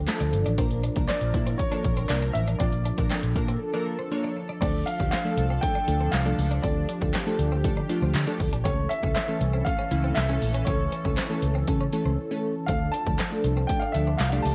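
A straight feel from a punchy analog drum machine, with kick, snare, hi-hat, handclaps and crash, drives this driving, bittersweet dance-pop excerpt, joined at 5.1 seconds by a group handclap set back in a small room, with brief breaks near 3.6 and 12.2 seconds. A dark, round, foam-muted electric bass sits up front, while a detuned wavetable chord stab plucks decaying chords, and a sweeping, full-bodied resonant pad and a bright, chorused twelve-string electric guitar riff stay in the background, the bass, stab and pad all pumping under sidechain compression. Over this, a clear, polished baby grand piano carries the melody through an analog delay, the whole cut steeped in cassette-tape colour and a moderate spring reverb.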